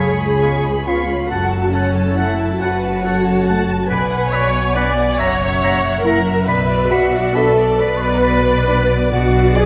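Opening at once on a C#7 chord, this melancholic, solemn classical passage in F# minor moves at a rubato 46 BPM in 6/8, with a lush bowed violin section singing the melody over an up-front viola section, a rich cello and double bass foundation, and bright, ringing harp arpeggios, while a pure wooden flute, a clear oboe, a vintage-toned clarinet and a distant second violin section with portamento weave second lines, mellow French horns join with sustained chords at 0.9 seconds, and a dark production with moderate scoring-stage reverb surrounds it all.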